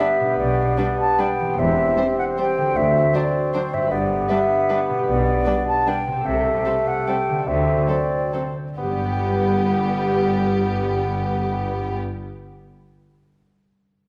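Festive and sweeping, this classical orchestral ballroom waltz in 3/4 moves with a rubato feel, easing and slowing from 5.7 to 8.8 seconds before a new section arrives. A warm, vibrato-rich chamber violin section carries the melody, while a darker, woody second violin section, a mellow clarinet and an airy, distant concert flute weave supporting lines above a clear bassoon and an expressive viola section. A ringing harp plays arpeggios in the background, rich cello and double bass sections enter at 0.4 seconds to anchor the bass, and a wet scoring-stage reverb lends the whole ensemble a spacious sheen.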